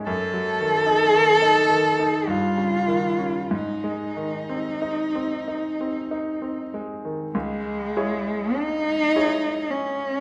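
A wet recital hall reverb surrounds this melancholic, yearning excerpt of a romantic classical duo, which moves in a flexible, rubato triple metre. A warm, bowed solo cello sits up front and carries the melody with expressive vibrato and portamento, while a bright, polished grand piano accompanies with a brilliant, present tone and short sustain. Both play from the start to the cut at 10.2 seconds, with a new section arriving at 7.3 seconds.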